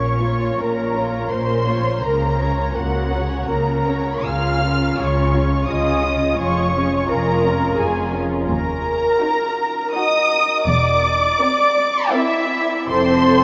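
Drenched in a cathedral reverb that makes the vast, echoing space bloom around every note, this solemn, elegiac excerpt from a slow romantic movement for string orchestra sways in a rubato 3/4 at 73-89 BPM in Bb minor, with an up-front, veiled melody from the muted violins, a second violin line and dark viola accompaniment beneath it, and a lush bass of muted cellos and soft-attack double basses, all bowed con sordino with vibrato as the harmony moves from Bbm through Ebm and C7/E to a closing F at 12.9 seconds.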